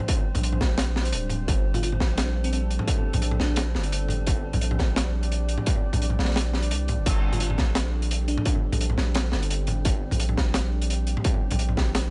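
A half-time swung groove of crunchy, saturated breakbeat drums with a high-tuned snare and a distorted electronic kick that drops out from 6.4 to 7.1 seconds drives this spacious, heavy drum and bass excerpt, with a long, deep 808-style sine bass up front, a moody, warbling ambient pad pumping underneath, an eerie metallic drone in the background, and a sparkling bell-like FM electric piano with tremolo and tape echo appearing at 1.8 seconds and again at 7.3 seconds.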